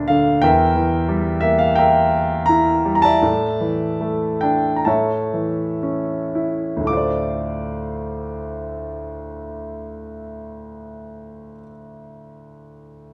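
Classical solo piano, lyrical, with a moody, cool character in 4/4 and a freely flexible rubato feel. A clear concert grand sits up front, its deep bass and long sustain ringing naturally in a moderate recital hall reverb as the playing slows from 0.4 to 6.9 seconds, moving through diminished and suspended harmonies that settle onto a minor seventh chord. This excerpt is cut from a longer piece and runs just over 13 seconds.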